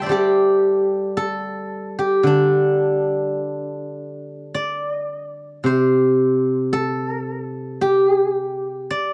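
In a free, rubato pulse, this serene and flowing passage of Chinese traditional music features a solo steel-string zither played with fingerpicks, its silvery, ringing tone spanning from C3 to C6 and sitting up front in a close, dry 1970s-style studio recording touched with light reverb.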